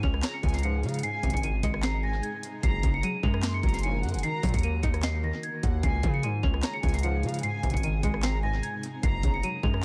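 This excerpt rides a half-time trap groove at 150 BPM in 4/4, with a knocking kick, sharp snare, handclaps, rim clicks and bright hi-hats from an up-front, tape-warmed drum kit that carries tape echo. Beneath it, a distorted 808-style bass sits equally forward, heavy and saturated, with a fast attack and decaying tail. Set in Db major, the mood is triumphant yet wistful, as the chords move from Db through Ab, Gbadd9 and Ebm before cycling back. A large celesta carries the melody high in its range, its bell-like, delicate tone ringing through tape echo, while a twangy, warbling resonator pluck with chorus and phaser plays accompaniment in the background beside a cloudy, evolving granular pad. A dark, woody violin section adds a lush second line from 0.2 seconds, and a mellow brass ensemble punctuates the passage with tight, low stabs at 0.6, 3.8 and 7.0 seconds. The whole mix sits in an echo-heavy digital ambience.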